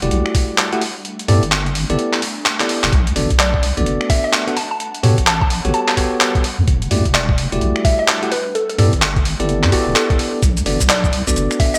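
A bright, 1980s-style digital sheen and a moderate plate reverb frame this bouncy, skippy two-step UK garage cut, taken from a longer piece and moving at 128 BPM in 4/4 with a 62% sixteenth-note swing. Gritty, pitched-down sampler-style drums sit up front, their finger snaps, handclaps, hi-hat and shaker washed in gated reverb and re-recorded in a large room, while a thumpy electronic kick drops out from 1.1 to 2.9 seconds, with a short drum fill just before it returns. Underneath, a deep, dark wobble bass with a chorus effect holds the low end, and a bell-like, clean tine electric piano jabs out stabs over chords that move from Em11 through G69, Bm7 and A13. A very quiet, ethereal pad hovers far behind, its slow-attack chords drifting with a long release. At 3.4 seconds a hollow, detuned square-wave pluck enters with the melody, its mellow notes decaying through chorus and digital delay.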